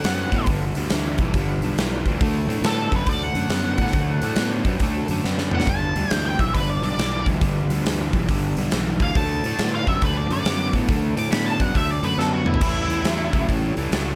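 Lightly reverberant and up front, this driving, swaggering excerpt of blues rock power trio and southern rock swings at 138 BPM in D mixolydian, built on a huge arena drum kit with a punchy kick, bright cymbals and fills at 5.2 and 12.2 seconds, a double-tracked overdriven semi-hollow guitar riff, a growly fuzz-soaked fingered bass, a very quiet, gritty tonewheel organ holding thick chords through a slow rotary speaker, and a dark octave-fuzz lead guitar with wah carrying the melody until 13.5 seconds over G7, D7 and A7 changes.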